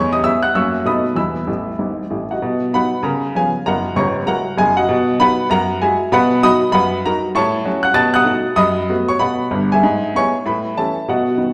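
Swinging eighth notes drive this playful stride piano jazz excerpt, in which a clear, woody upright piano plays solo up front with audible action noise and short sustain, tucks in a brief fill from 1.5 to 2.4 seconds, and rings out into a wet recital hall reverb.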